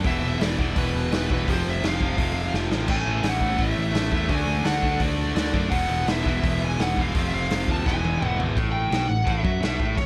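Punk rock at 169 BPM, rebellious and energetic in a brief cut from a longer piece: a punchy, up-front garage drum kit with a rolled-off top and a growly picked bass drive under a dark, high-gain lead guitar melody, while overdriven stack and tight distorted rhythm guitars grind out riffs in the background, joined at 2.9 s by a double-tracked overdriven garage guitar, with drum fills at 2.5 and 7.9 s leading into a new section at 8.6 s, all in light reverb.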